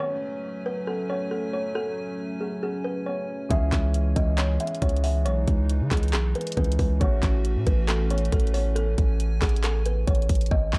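A dark, digitally ambient production carries this brooding, menacing trap cut at 137 BPM in a half-time feel. It opens with a woody, airy kalimba melody, filtered and touched by tape echo, over a hollow, flute-like pad with lush chorus, moving through F#madd9, C#m and A6. At 3.5 seconds a deep, sine-toned 808 bass with a fast attack and long decay arrives up front, alongside an electronic trap kit of hard-clipped kick, handclaps and hi-hats, while a mellow, vintage baby grand piano sits in the background until the hi-hats are muted at 10.5 seconds as the excerpt closes.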